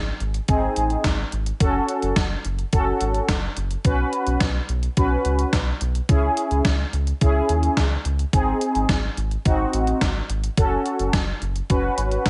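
Cool and melancholic, this synth-pop fragment moves in a straight 4/4 over a progression of G#, F#m, Bsus2 and C#m. A round analog bass opens at 0.0 seconds, its deep blend of sawtooth and sine sustained and dark beneath everything that follows. The gated 80s digital drum machine arrives at 0.2 seconds with a thumpy kick, hi-hat and an overdriven snare steeped in gated reverb. The drums sound sampler-like and up front, as if re-recorded in a small room. Mellow synth brass joins at 0.5 seconds, nasal and detuned, its filter sweep and chorus giving it a hazy, brassy sheen. Light reverb and a softened top end lend the whole mix a dusky glow.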